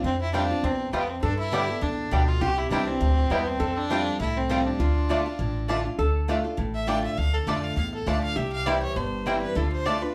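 Swung eighth notes drive this fast bluegrass excerpt at 202 BPM in 4/4, set in D dorian with a lonesome, haunting mood and heard from further back in a reverberant studio room as chords move from Fadd9 through G and C to Dm. A clear, nasal fiddle with light vibrato carries the melody up front and takes a solo from 6.0 s, over a woody, thumpy pizzicato upright bass on gut strings, a bright, boxy picked archtop guitar, and a metallic second line from a lap resonator guitar played with slide and fingerpicks. Twangy, percussive banjo arpeggios and double-strung mandolin stabs both enter at 0.3 s.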